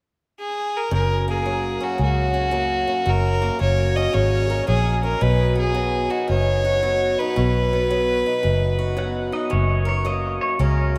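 Down-home and sunny, this swinging honky-tonk and classic country piece opens with a clear, earthy fiddle carrying the melody with light vibrato and a smooth top. At 0.9 seconds it is joined by a bright, boxy picked acoustic guitar with fresh strings and finger squeak, and by a dark, round, foam-muted electric bass sitting up front. A twangy, fingerpicked pedal steel guitar with slide, volume swells and tape echo enters at 9.0 seconds and takes a solo at 9.5 seconds over the guitar and bass, all set in a vast, echoing cathedral space.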